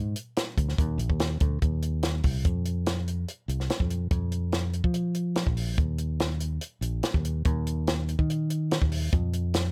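A fingered electric bass opens this short cut from a longer math rock and midwest emo piece, with a compact cocktail drum kit joining at 0.2 seconds. The tempo sits at 144 BPM in a straight 4/4, and the mood is playful and intricate. The bass is dark and round, sitting up front with a direct electric tone as it moves between Bb1 and F3. The kit is acoustic and natural, built from hi-hat, kick drum and snare, with a punchy kick and a high-tuned snare that sound dry and close. The arrangement shifts into a new section at 2.4 seconds, and the two parts carry on together until the drums stop at 9.6 seconds and the bass at 9.7 seconds. The recording has little reverb, giving the duo an intimate, close-up presence.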